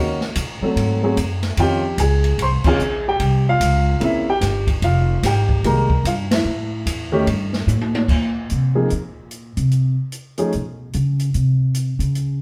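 A woody, thumpy upright bass stands up front in this sophisticated jazz piano trio excerpt, plucked pizzicato on steel strings and taking a solo from 8.1 seconds to the end. The piece swings at 148 BPM in 4/4, centred in Ab major, with harmony that moves through rich colours such as Ebm7, Ab7b9, Dbmaj9 and C7b9. An intimate grand piano carries the melody with a warm, natural tone, its action noise audible, and it drops out at 10.5 seconds. An open acoustic drum kit, with dark cymbals, a medium-tuned snare and a boomy kick, sits in a small, natural-sounding room and adds crash, hi-hat, ride and toms. The trio hits accents together at 2.6 and 6.2 seconds, and a short drum fill leads into the bass solo. Moderate studio reverb places the band a little further back in the room, giving the whole a warm, sophisticated feel.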